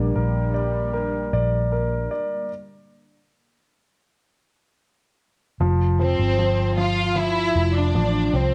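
This heartfelt, emotional pop ballad excerpt moves at a slow, straight 77 BPM in 4/4, opening on Gm/Bb with a clear, intimate concert grand piano (its action noise audible) over a round, punchy, foam-muted electric bass, while a detuned, sawtooth-edged pad with chorus sustains bright chords until 2.5 s. A stop runs from 2.5 to 5.6 s, after which the harmony settles on Fmaj7, and a rich violin section with vibrato carries the bowed melody from 6.0 s. The sound is homespun cassette-tape recording with light studio reverb, the piano, pad and strings all carrying a tape patina.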